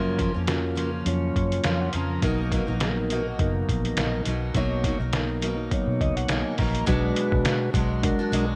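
Indie bedroom pop with a hazy, laid-back mood at 103 BPM and a light 16th-note swing, this short cut sets a picked, full-bodied steel-string acoustic guitar with lush chorus and warbly pitch drift up front beside a muffled, pitched-down sampler drum kit with a thumpy kick, while a soft, flute-like tonewheel organ through a slow rotary speaker and cassette tape adds fills at 1.4 and 5.7 seconds over a round, foam-muted electric bass, drifting from F#maj7 to Bmaj7 before turning to Bm6 at 6.9 seconds under light reverb.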